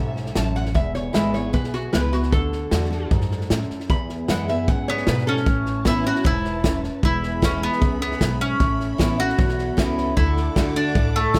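Honky-tonk and classic country at 153 BPM in A major, with a down-home, easygoing mood, cut from a longer piece. A picked steel-string acoustic guitar with an auditorium character and a woody, thumpy upright bass played pizzicato on gut strings carry the accompaniment throughout. A lush, bowed violin section holds sustained chords with vibrato in the background, while a natural country drum kit enters at 0.2 seconds, its punchy kick and medium-tuned snare sitting up front alongside the hi-hat. A lap resonator guitar played with fingerpicks and a steel bar takes a metallic, nasal solo line from 0.4 to 5.5 seconds, and a mellow, double-strung mandolin picks up the melody from 4.9 seconds. The chords move through A, E and D, shifting to Aadd9 in the second half, all in a studio room with light reverb.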